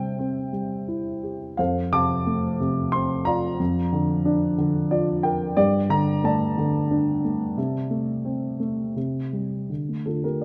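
In a flexible, rubato 3/4 that drifts between 81 and 92 BPM, this brief excerpt of lyrical classical solo piano unfolds in F major with a brooding, moody air, moving from C through F and Bb/F to Gsus2, Amadd11/C and C5 before settling on Dm at 9.7 seconds. A single dark grand piano, mellow and worn with audible action noise and an up-front, intimate presence, spans F2 to D6 and adds a short fill from 4.6 to 5.6 seconds. The sound is dark, smooth and vintage in character, set in a moderate recital hall reverb that lends the phrases a warm glow.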